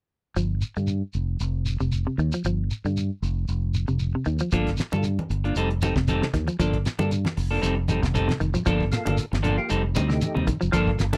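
A round, punchy fingered electric bass sits up front in this intense, funky afrobeat excerpt at 116 BPM in G minor, with a light sixteenth-note swing. From the start it is joined by a dark, hollow-bodied semi-hollow electric guitar playing arpeggios and a grainy, mellow shekere, over chords moving between G5 and F5. At 4.5 seconds a clean electric guitar adds picked stabs up front. At the same moment a cloth-damped, thuddy drum kit with a fat snare and tight kick enters, along with bright, low-tuned congas struck with hard hands in the background, and the harmony fills out to Gm9 and F9. A drum fill leads into the closing section, where a percussive tonewheel organ with third harmonic percussion, chorus vibrato and a slow rotary speaker comes in at 8.9 seconds. The sound is dry and close, a 1970s-style studio recording with little reverb.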